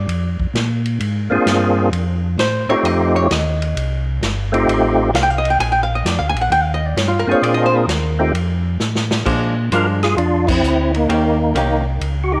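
A swung 4/4 groove at 131 BPM drives this soulful, greasy soul jazz organ trio fragment, where a dark, picked hollow-body archtop guitar solos up front over a round, mellow tonewheel organ bass with key click and slow rotary speaker, a punchy-kicked vintage kit in small-room ambience adds a fill from 8.8 to 9.3 s, and a fat, lightly overdriven percussive organ carries the melody from 1.3 s through chorus vibrato and slow rotary, with a band accent at 10.4 s, all set in moderate plate reverb over Bb7, F7 and Eb7 changes.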